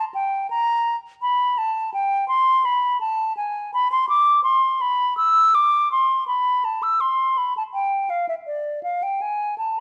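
A dark production set in a moderate recital-hall reverb frames this flowing, solemn fragment of a baroque-style classical fantasia in A minor, where a lone concert flute, up front with a pure, straight tone and crisp attack, plays alone from 0.0 to 9.8 seconds between D5 and E6 in a rubato 4/4 around 82 BPM.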